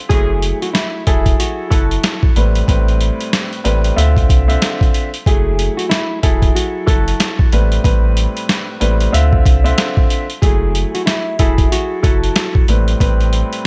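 Boom-bap hip-hop with a gritty, reflective mood, this excerpt from a longer piece rides a loose, swung 4/4 groove while the same passage plays twice through over moody ninth chords. A sampler-style drum kit sits up front, its thumpy kick, medium-tuned snare and hi-hat sounding compressed, pitched down and tape-warm, as if re-recorded in a small room. Beneath it, a deep, thick sub bass with a triangle-like, saturated tone and fast attack holds sustained low notes. An upright piano carries the harmony with a warm, woody, vintage character, intimate action noise and long sustain, shaped by high- and low-pass filtering. A fingerpicked nylon-string guitar plays the melody in a dark, full-bodied classical voice, filtered and touched by slapback echo, until it stops at 12.5 seconds. The overall sound is dry and close.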